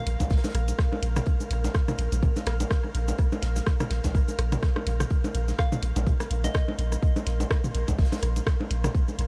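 A sparse, clinical minimal techno excerpt sits in light reverb, its punchy electronic kick and deep, mellow sine sub bass up front, the sub's pitch-drop attack and tube saturation riding sidechain pumping at 125 BPM with a 56% swing on the 16ths. Bright house hats, rim clicks and shaker layer with tape-toned bongos, toms and rim clicks carrying delay in a small room, while a polished acoustic kit's filtered hi-hat and snare stays in the background, and a drum fill arrives at 4.6 seconds. An ethereal, detuned pad with ensemble chorus and long release breathes under the groove in pumping motion, and a soft, pure FM bell with chorus, phaser and delay sounds briefly at the start and again from 5.6 seconds.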